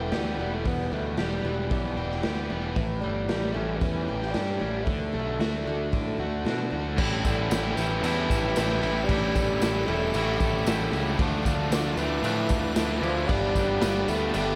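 Wistful and blissful, this dreamy shoegaze-tinged rock excerpt moves at 114 BPM in A mixolydian, with a mellow bassoon carrying the melody through diffuse ambient delay over an up-front fuzz bass, a raw garage drum kit with a punchy kick, and riffs from a chorused overdriven electric guitar and a twangy electric guitar with reverse reverb, while the very quiet, shimmering arpeggios of a twelve-string acoustic guitar give way at 7.0 seconds to a double-tracked distorted electric guitar and a jingly tambourine, before an icy glass pad enters at 8.3 seconds, the whole mix soaked in plate reverb.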